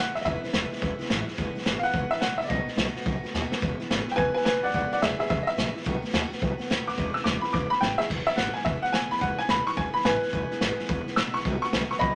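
Rockabilly with a rowdy, rollicking swing, this short cut from a longer piece puts a worn, slightly detuned, boxy upright piano up front with a solo melody throughout, backed by a bright picked steel-string acoustic guitar in the background, a woody, thumpy pizzicato upright bass on gut strings, and a vintage drum kit with dark cymbals and a punchy kick that plays fills at 3.3 and 8.0 seconds, set in a modest small-room reverb.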